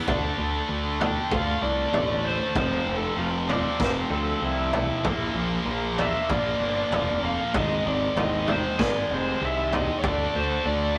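Quiet-loud alternative rock in a dark, cathartic mood, this 96 BPM passage in 4/4 moves in a half-time feel over Dm, F, Bb and G# before landing on D5, tuned to A4 = 438 Hz. A double-tracked, high-gain guitar riff and a growly fuzz bass sit up front, joined by a very quiet, twangy clean guitar picking arpeggios and a raw garage kit with a boomy kick and a gritty, rolled-off sound. From 1.0 s a dark, lo-fi lead guitar through a small cranked amp plays an overdriven solo melody, and the band is captured in a rough rehearsal-room recording with light reverb.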